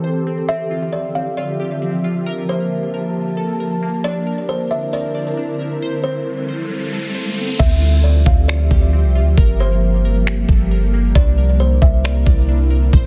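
Spacious and hazy, this atmospheric cloud-rap excerpt in D minor moves at 135 BPM with a half-time feel, as an ethereal, airy pad with chorus and reverb pumps beneath glassy digital key arpeggios and a woody kalimba melody through Dm11, Gm9, C9 and Am7, until a riser at 6.3 seconds gives way at 7.6 seconds to a deep, round 808-style bass and an up-front, tape-warm R&B kit of knocking kick, finger snaps and crash.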